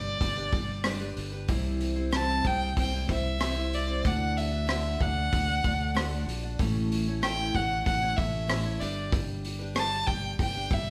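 A straight 4/4 pulse at 94 BPM is set by an up-front vintage drum kit from 0.2 s, its punchy kick, hi-hat and rim click sounding in a small room with a rolled-off top, beneath a nostalgic, jangly stretch of folk rock and heartland rock cut from a longer piece. A growly, bright fingered electric bass holds the low end while a picked steel-string acoustic guitar adds bright accompaniment with audible finger squeak over chords moving G, C, D, A and back to G. On top, a single warm, smooth fiddle carries the bowed melody with light vibrato, as the whole band plays live together in one room with light reverb.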